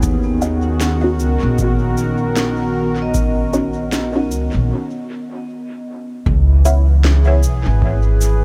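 This ambient dub excerpt moves at an unhurried 77 BPM in 4/4, with a lazy swing on the sixteenths and a hazy, spacious mood, cut from a longer piece. A pizzicato upright bass with gut strings sits up front, loudest of all, and sounds thumpy and woody. Beneath it, an electronic kick drum adds a deep, tape-warm pulse, while a quieter electronic cabasa and snare carry dub echo and a large-room sheen. A smooth, detuned sawtooth pad holds sustained chords with chorus, and from 0.4 seconds a muted, nasal dub chord stab enters with a moving notch, phaser and echo. A dark vibraphone with hard mallets spins ringing, metallic arpeggios through tape echo until 6.3 seconds, where the harmony moves from D#m7 to C#m7 after a break that begins at 4.7 seconds. The whole mix is bathed in light reverb.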